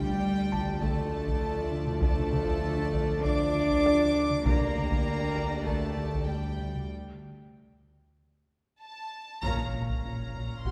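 Eerie and mysterious, this cut from a longer suspense film score moves at 99 BPM in D minor, drifting from D minor to G minor over D before a break at 6.9 seconds and a turn to B-flat minor at 9.4 seconds. Two violin sections play sul tasto, one carrying the melody with light vibrato and an intimate closeness, the other a pure, floating second line. A woody viola section sits lush in the background while a close cello section and a symphonic double bass section hold the bass with soft attacks. Distant, roomy French horns and a very quiet, tight trombone section sustain dark chords until 6.9 seconds, joined by a soft, felt-muted upright piano adding mellow texture and a chorused synth bass whose glossy, retro pulse-wave riff evolves under a moving notch and filter sweep. A taiko ensemble struck with heavy sticks drives the rhythm, timpani with calf heads mark the opening and the chord change, and a drum fill leads into a band accent and a huge, bright impact at 9.4 seconds. 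Everything sits within a wet scoring-stage reverb, heard from further back in the room.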